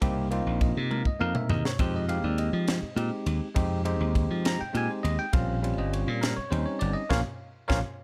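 The recording sounds close and dry, with all three players up front. This is a driving, funky slice of electric jazz fusion in 6/8, cut from a longer piece. A bell-like tine electric piano carries the chords with a clean glint and a touch of plate reverb, moving from Cm7 to Fm9 at 1.8 seconds and on to Bbm69 and Bbm. Underneath, a punchy, amped slap bass gives the low end a bright snap, while an airy acoustic kit with a high-tuned snare and tight kick plays ride cymbal, snare and toms. The drums throw in a fill at 0.9 seconds, and another at 7.1 seconds arrives with a full band accent to close the passage.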